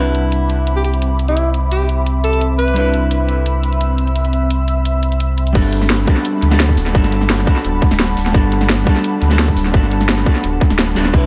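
A straight 4/4 liquid drum and bass groove with a cracking, overdriven snare and bright hats carries this uplifting fragment, where a dark, clean hollow-body jazz guitar and an airy, detuned pad with sidechain pumping and a filter sweep hold Cmaj9 over a deep sine sub bass, a clear alto saxophone adds scooped jazz-style notes in dub echo from 0.8 to 3.1 seconds, and a tight, up-front electronic kick arrives with the drop at 5.6 seconds as the harmony shifts to Gmaj9 in an echo-heavy mix.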